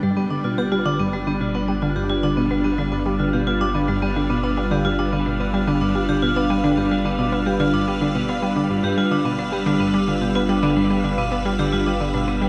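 A bright, morphing wavetable pad sits up front with sustained chords, joined from the start by ringing hard-mallet vibraphone arpeggios, a round, detuned analog pluck riff and a deep sine sub bass in this cosmic, hypnotic stretch of sequencer-driven space music at 109 BPM in 4/4. The pad carries ensemble chorus, phaser and shimmer reverb, the vibraphone and pluck both trail delay and shimmer, and the harmony opens on G7. At 1.2 seconds a very quiet, breathy wind-like noise texture drifts in high above, all of it set in a huge, wet ambient reverb with a 7.3-second tail.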